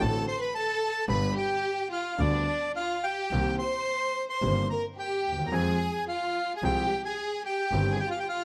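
A reedy, bright bandoneon carries the melody up front in this dramatic, passionate tango fragment in C minor, played rubato around 109 BPM in 4/4 and cut from a longer piece. Beneath it, a lush, bowed symphonic violin section with vibrato and a smooth top sings a second line, while a vintage-toned concert grand piano with deep bass supplies the accompaniment and a single bowed double bass, focused and close, holds the low end. The harmony moves from D7 and G to Cm7 and Fm before settling on Cm/G, all set in a moderate large studio reverb and captured with close, detailed microphones.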